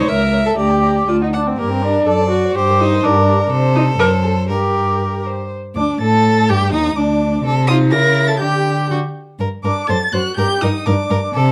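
In a quick 2/4 at 116-128 BPM, pushed and pulled with rubato, this restless, stormy G minor passage from a classical-period string quartet movement presents the same material twice across about 11.5 seconds. A dark first violin carries the melody with soft attack, vibrato and expressive portamento, ranging as high as A#6, while a clear, focused second violin adds a close second line. Up front, a rich, even viola supplies the accompaniment and a cello played sul tasto with an airy bow and light vibrato anchors the bass, all set in light reverb with a dusky, warm production.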